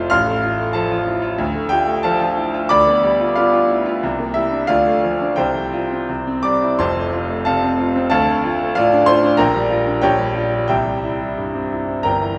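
A rubato 2/4 pulse moving between 84 and 96 BPM carries this brilliant, sparkling passage from a longer classical virtuoso piano study, where a solo grand piano, clear and smooth with a vintage character and long sustain, sits up front across a span from F1 to F6, moves through chords such as F/A, Dm, G7/D and C9 before a second section begins at 6.8 s, and rings into a wet, hall-like reverb.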